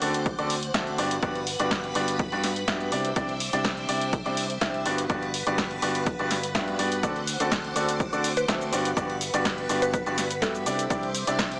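A bright, up-front baby grand piano drives this feel-good, euphoric piano house excerpt, playing a riff that pumps with the sidechain and trails a dub echo across a progression of D7, Gmaj7 and Cadd9 in G major at 124 BPM in a straight 4/4. Behind it, a shimmering, vintage string machine holds slow-attack violin chords high in the background, thickened by ensemble chorus and breathing with the same pumping. A fingered electric bass with an amped tone anchors the low end, also ducking to the sidechain. A punchy analog drum machine sits forward with hi-hat, shaker and snare, joined from 0.3 s by a tape-warm electronic kick. Between 8.4 s and 10.7 s, a woody, round mallet-like synth pluck adds a brief melody in the background, colored by chorus and a cassette-tape effect. Light reverb and a digital ambience frame the mix, which carries a small-speaker character.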